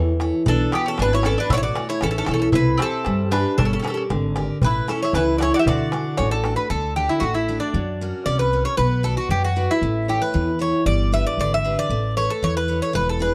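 Up front, a Greek bouzouki carries the melody from 0.5 seconds with a metallic double-string sound, some of its strings doubled at the octave. This short passage of Greek folk music sits in a straight two-beat metre and has a relaxed, hopeful mood. A bowl-back mandolin picks a bright second line beneath it until 6.4 seconds, while a metal-shell darbuka adds crisp, close, dry percussion that stops at 6.6 seconds. A jumbo steel-string acoustic guitar provides full-bodied picked accompaniment, and a pizzicato upright bass on gut strings gives a woody, thumpy low end that also sits up front. The harmony moves from Bm through A, C and Gm to D, then the second half turns through F#, Bm and G to close on Aadd9, all within a dark production touched by light reverb.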